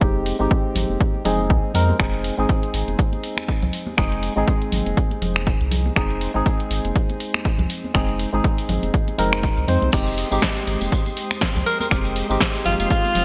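An edgy, forceful alto saxophone bursts in up front at 11.7 seconds, its scooped notes carrying a vintage 12-bit sampler grit and a trail of delay over this deep, warm deep house excerpt at 121 BPM with a swung sixteenth-note feel. Underneath, a hollow, percussive organ stab rides lush chorus, sidechain pumping and delay, moving from Fm9 to Ab/F and back, while a round, dark analog bass holds the low end. A punchy, tape-warm electronic kick sits up front beside an analog drum machine playing crash cymbal, finger snaps, hi-hat and snare, with ringing congas struck by hard hands further back. At 9.9 seconds a smooth, mellow analog pad, a shimmering, warbling string machine of violins and a jingly, close tambourine join in, the pad and strings both pumping with the sidechain. Light reverb and a bright 1980s-style digital sheen frame the whole groove.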